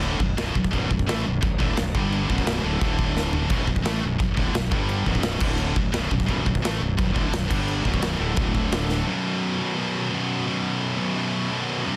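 A bright, picked high-gain guitar riff sits up front in this aggressive, dark heavy metal piece, joined by a second distorted guitar tucked into the background. Beneath them, a fingered electric bass with fuzz and overdrive adds a growly, punchy low end. An acoustic rock kit drives hard with a boomy kick, medium-tuned snare, toms, and sparkling china and crash cymbals, punctuating the riff with fills, the first arriving at 3.2 seconds. The riff cycles through Bm, G5 and D5 chords until the bass and drums stop at 9.0 seconds, leaving the two guitars alone on a B5 chord. A small room ambience and a dense, heavily limited modern master give the recording a tight, crushing weight.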